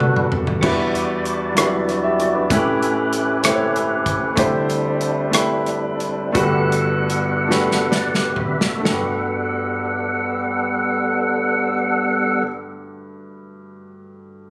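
A slow, swaying 6/8 pulse carries this jubilant, hopeful gospel passage, cut from a longer piece, opening on a short drum fill before settling into its groove. A woody, natural upright piano supplies the accompaniment across the whole passage, ranging from deep bass notes up into its middle register, while a fat, lightly overdriven tonewheel organ holds sustained chords with key click, third-harmonic percussion, chorus vibrato and a slow rotary speaker. The airy, polished country drum kit pairs a punchy kick and medium-tuned snare with hi-hat, rim clicks, toms and crash cymbal. The harmony moves through Gmaj9, Em9, A9 and D9sus4 before returning to Gmaj9, and the music gradually slows down in the middle of the passage. Drums and organ share a fill that leads into a new section at 8.8 seconds, after which the drums drop out at 9.1 seconds and the organ falls away at 12.4 seconds, leaving the piano to finish alone. 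All three instruments sit up front in a moderately large, roomy reverb, and the whole recording has a compressed, phone-in-the-room character.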